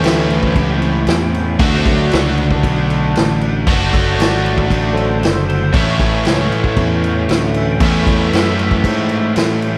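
A fat, percussive tonewheel organ leads this driving, gritty excerpt of blues rock and southern rock, its lightly overdriven sustained chords turning through a slow rotary speaker and taking a solo turn before it drops out at 9.3 seconds. Beneath it, a crunchy, double-tracked electric guitar plays a bright, picked riff up front, touched with slapback echo. A growly picked electric bass holds the low end, and a vintage acoustic drum kit with a punchy kick, a medium-tuned snare, crash cymbal and dark, rolled-off cymbals sits forward in the mix. At a straight 116 BPM in 4/4, the music moves from A to D at 1.6 seconds and returns to A at 5.7 seconds. A lush hall reverb gives the power-trio groove a big arena sound.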